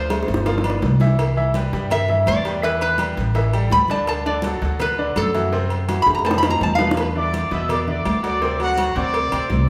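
Salsa with a fiery, passionate edge, this brief cut from a longer piece moves in a straight four with a live-in-one-room feel, the band bathed in a wet large studio reverb. A metal-body resonator slide guitar leads up front, played with a steel bar and fingerpicks, its metallic, nasal voice carrying the melody as a solo until 7.0 seconds, when a bright, tight trumpet section takes over with a smooth, pop-style top. Underneath, a baby grand piano supplies brilliant, polished accompaniment with an intimate presence, short sustain and audible action noise, while a woody, thumpy pizzicato upright bass sits dark and forward. The percussion blends damped, thin-skinned congas in the background, tight high-tuned cowbell and bongos played with soft hands, and ringing metal-shell timbales with agogo bells heard close and dry. A drum fill opens the passage and another arrives just before the trumpets enter, as the harmony moves through chords such as G7, Cmaj7, Em and C(#11), reaching D7 at the close.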